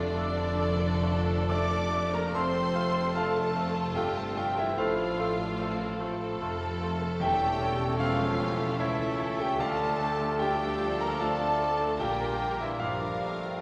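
A polished, up-front concert grand piano with a deep bass carries the brooding, passionate melody in D minor from the first moment, in a rubato 3/4 at 74 BPM, doubled by an intense, distant violin section. Around them, a hollow flute section, a second violin section with expressive portamento, a lush viola section, a mellow French horn section, a trombone section, an intense cello section and a focused double bass foundation with a close-miked tuba fill out this classical orchestral passage. From 0.2 seconds they are joined by a soft-attack clarinet, a present cor anglais and a very quiet bassoon. The passage is cut from a longer piece and bathed in the wet reverb of a recital hall.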